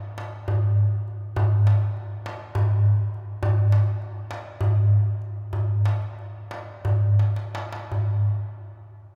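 Drenched in a church's long, wet reverb, this brief, longing and melancholic Turkish excerpt in 7/8 at 163-205 BPM (eighths) features a solo metal-shell darbuka, crisp, large and deep, played up front with hard hands from 0.2 s, slowing down from 3.4 s and breaking into a drum fill at 7.2 s before the closing section.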